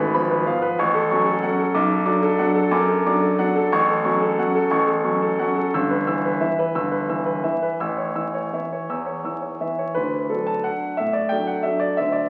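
The recording has the vinyl crackle of a very old 78 rpm record, with a wet recital hall reverb lingering around the notes. It is a short classical piano waltz in D major, cut from a longer piece, moving in 3/4 with a rubato feel at roughly 156-192 BPM. A baby grand piano plays solo from start to finish, its tone natural and up front, with long sustain, ranging from G1 up to E6. The mood is elegant and sparkling. The harmony opens on a diminished chord and passes through B minor seventh and E minor colorings before settling on A, then arrives on D as a new section begins at 10.0 seconds.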